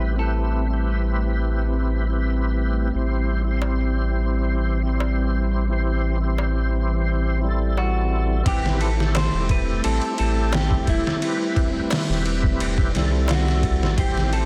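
A dense, heavily limited modern master in a digital ambience frames this melancholic, hypnotic trip hop excerpt in A minor, moving at 87 BPM in a straight 4/4 as it shifts from Am7 to C/A and back. A round, deep analog bass sits up front throughout, its dark, sustained tone carrying a filter sweep, while a full, lightly overdriven tonewheel organ turns on a slow rotary speaker with chorus vibrato, harmonic tremolo, tape echo and 12-bit sampler grit. Behind them, a warbling, nostalgic pad of detuned square, triangle and sawtooth waves holds mellow, lo-fi chords in the background through chorus, phaser and its own reverb. A clean, picked electric guitar carries the melody with tape echo and sampler grit, first in the opening seconds and again from 7.8 seconds. A crisp, small metal-shell darbuka, close and dry, enters at 3.6 seconds, and at 8.5 seconds a gritty, pitched-down sampler-style drum kit arrives up front with a thumpy kick, medium-tuned snare, hi-hat and ride, overdriven and re-recorded in a large room.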